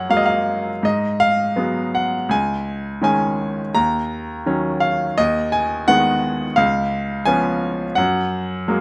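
In a free, rubato 4/4 pulse, this tender, calm fragment of lyrical classical solo piano lasts 8.8 seconds on a bright, polished baby grand whose short-sustained tone sits up front under close, detailed microphones with light reverb, its lines spanning from C#2 to A#5 as suspended, seventh and added-ninth harmonies drift gently before circling back to F#add9.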